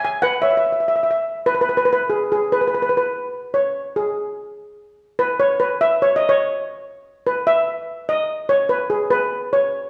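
A wet, resonant recital-hall reverb surrounds this short calypso fragment, cut from a longer piece, giving it the open air of a church or concert hall. A single lead steel pan, played with medium rubber sticks, sits up front with a metallic, shimmering tone that carries a boxy edge. The mood is festive and carefree, moving at 145 BPM in a straight 4/4 with the tuning set to A4 = 441 Hz. The pan opens over a Bsus4 harmony. From 1.5 seconds the harmony drops away and the pan takes a solo line between G#4 and G#5 that runs until 9.9 seconds.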